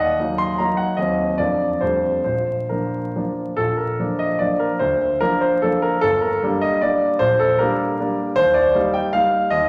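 A romantic classical dance in triple time, this short cut from a longer piece sets a rustic, graceful mood for solo grand piano in Bb major. The tempo moves with rubato between 126 and 167 BPM, and dotted rhythms give the dance its lilt. The piano sits up front with a present, polished tone and short sustain, ranging from G1 up to C6. The opening phrase runs to 3.6 seconds before the same material returns and carries through to 9.7 seconds, with harmony passing from Ebm through Bb/F and F69 to Bb, then on to Gm and a closing Ebmaj7. A wet recital hall reverb surrounds the playing, and a layer of vinyl crackle lends the sound an aged patina.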